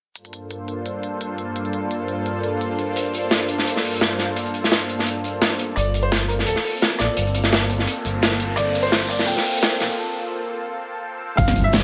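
Lush and melancholic, this short cut from a longer liquid drum and bass piece moves at 171 BPM in G minor with a light swing on the sixteenths, opening on a Gm11 chord. A thick, detuned unison pad carries sustained chords from the start, shimmering with chorus and phaser and pumping against the beat, while a produced pop kit supplies a fat snare and crisp hats up front. At 3.0 seconds a gritty, saturated breakbeat kit joins, its medium-tuned snare and hats filtered to a rolled-off, mid-forward studio-room sound. From 5.8 seconds a build-up begins as the pad sweeps through a filter, a brilliant baby grand piano picks out a short-sustained melody coloured by vintage 12-bit sampler grit and digital delay, and a mellow, detuned synth bass holds the low end. A riser climbs in the background into a break, and at 11.4 seconds a knocking electronic kick lands with the impact, all set in a lush hall reverb with a touch of small-room ambience.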